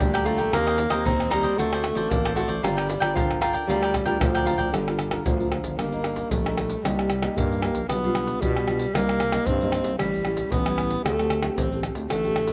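A straight 4/4 groove at 114 BPM drives this lively, bittersweet samba and choro passage in G minor, cut from a longer piece, with egg shaker, pandeiro, tamborim and a deep surdo sitting up front in a small, dry acoustic space. A growling, thick FM bass with a fast attack and sustained tone holds the low end throughout, while a nylon-string guitar, thumb-plucked with fresh strings in a classical manner, sits in the background with a slapback echo. A crisp, picked cavaquinho, also carrying slapback echo, rings brightly up front until a drum fill at 4.2 seconds closes the opening section, after which it stops at 4.7 seconds. Over all of this a close-miked tenor saxophone plays a second line in a dark, breathy subtone, with soft attacks, scooped notes and vibrato giving its jazz-style phrasing a whispered, intimate quality. The harmony moves from Gm7/D through D7 in the opening, then travels through Ebmaj7/G, G7/B and A7 before arriving at D7sus4 near 11.1 seconds.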